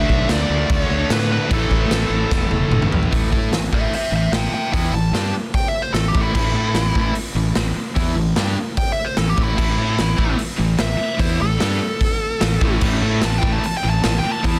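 Anthemic, energetic hard rock at 148 BPM, cut from a longer piece, where a nasal, picked lead guitar with a parked wah, overdrive and tape echo plays its solo from 3.1 seconds over a growly, fuzz-driven fingered bass, a raw garage drum kit with a punchy kick, up front in a bright stone room with a drum fill from 2.3 seconds, and background riffs from a bright distorted electric guitar, a hollow-body overdriven semi-hollow guitar and a double-tracked high-gain guitar that drops out between 3.1 and 9.6 seconds, all under light reverb and a dense, heavily limited modern master.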